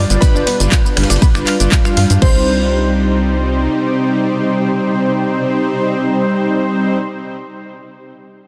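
A punchy, up-front electronic kick drives this driving, emotional progressive house excerpt at 120 BPM in C harmonic minor, joined until 2.3 s by a layered pop kit of crash, hi-hat, shaker, finger snaps and handclaps and until 2.1 s by a very quiet, gritty breakbeat kit of ride and snare, while a tight sawtooth sequencer bass runs to 3.7 s, a round analog pluck arpeggiates briefly, a twinkling granular texture sparkles faintly, and smooth, airy supersaw stabs, a shimmering ethereal pad, a dark, boxy grand piano melody and a glassy wavetable pluck line carry on through, every pitched layer except the texture breathing with sidechain pumping over a dense, heavily limited master with light reverb.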